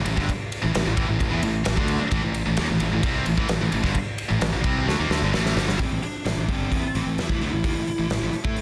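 A growly, fuzz-laden fingered bass sits up front beside a punchy big rock drum kit with a fat snare in a bright stone room, driving this heavy, menacing hard rock cut in A minor at 130 BPM, while two scooped high-gain guitars and a double-tracked overdriven electric guitar play a riff in the background through a drum fill starting at 4.9 seconds, after which a warm lead guitar through a small cranked amp takes a short melody from 5.8 seconds as one scooped guitar carries on to the end.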